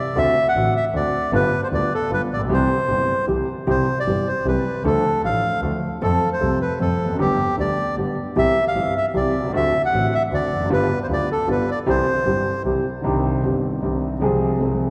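A reedy, dark bandoneon opens this passionate, elegant tango fragment, carrying a smooth, up-front melody. An instant later, at 0.2 seconds, a grand piano with deep bass and a vintage character joins as accompaniment, alongside a single bowed double bass whose clear, intense tone has a light vibrato and a smooth top. The piece moves in 3/4 at 154 BPM with a rubato feel, in C major, circling through D7, G7 and C before moving to Dm, F and G. The bandoneon falls away at 12.6 seconds, and from 13.0 seconds the harmony darkens to Cmadd9 and Fm/C under the piano and bass. A long, wet church reverb surrounds the whole performance, giving it the spacious air of a church or concert hall.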